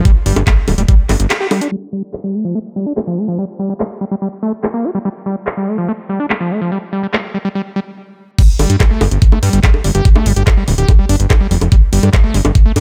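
The recording sits in a filtered digital ambience, with the drums re-recorded in a small room and the basses pushed up front. This hypnotic, driving psychedelic trance passage, cut from a longer piece, opens on a squelchy, gritty acid bass riff, saturated and resonant, pumping against the sidechain and trailing dub echo. A layered electronic kit of bongos, handclaps, crash cymbal and bright hi-hats, dulled by low-pass filtering, runs beneath it, joined briefly by a knocking electronic kick and a fat, detuned sawtooth analog bass. After a short break and band accent at 1.3 seconds, the acid line carries a long filter sweep over the drum kit until a stop at 8.0 seconds. At 8.4 seconds the drop brings the kick and the thick low bass back in underneath the riff.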